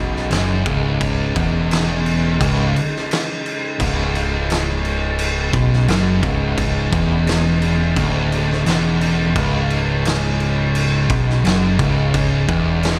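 Light reverb gives this dark, heavy recording a sense of space. It is a short stretch of stoner and doom metal, ominous and hypnotic, sitting on a single minor chord in a straight four. Two thick fuzz guitars play a low, distorted, picked riff from the start. They sit somewhat in the background beside a growling, picked electric bass, whose overdriven tone comes across bright and direct. An oversized, low-tuned acoustic drum kit enters at 0.2 seconds and sits up front, with a punchy kick, a fat snare, dark crash cymbals and a gritty, saturated, warm character with a rolled-off top. Behind it all, a tonewheel organ holds sustained chords through a slow rotary speaker, its warm, fat, lightly overdriven tone colored by chorus vibrato and a hint of key click.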